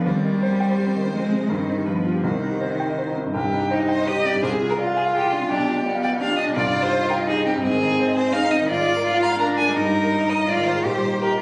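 Violin, cello and concert grand piano start together in a quick, lively and graceful classical-period movement for piano trio in 3/4 at 168 BPM, opening in C minor and turning to Eb major at 7.6 s. The focused, bowed violin carries the melody with vibrato, the smooth, close cello sings a second line, and the piano, clear yet a little worn with deep bass, supplies the accompaniment. This passage, cut from a longer piece, sits in a wet recital hall with extra club reverb and compression, and it sounds as if captured on a phone in the room.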